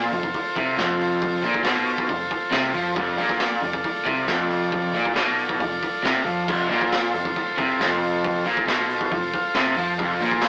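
Rowdy and swaggering, this garage rock excerpt drives along at 137 BPM in a straight 4/4, sitting firmly on an F chord in F major. A crunchy, overdriven electric guitar, picked and double-tracked, sits up front with a low riff, while a buzzy vintage combo organ holds clean sustained chords with light vibrato above it. A dark, round hollow-body short-scale bass, picked and punchy, stays in the background underneath. The raw garage kit enters at 0.1 seconds with a punchy kick, medium-tuned snare, hi-hat and crash, its gritty, saturated sound pumping in a small room with a rolled-off top. A transistor combo organ fill arrives at 9.1 seconds, and the whole take carries a rough rehearsal-room character with moderate reverb, warm saturation and an AM radio tone.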